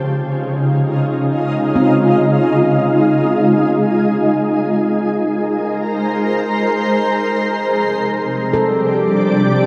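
In free time, this luminous ambient fragment opens with an up-front, ethereal pad holding sustained chords that drift from Db to Ab and then Csus2, its detuned, granular glow crowned by an octave-up shimmer. At 1.8 seconds a ringing handpan enters in the background with meditative arpeggios trailing into a diffuse delay, and at 8.0 seconds a mellow, warbling analog drone built on sawtooth and pulse waves joins softly beneath. A huge, wet reverb and a dark, warm production wrap the whole passage in a deep haze.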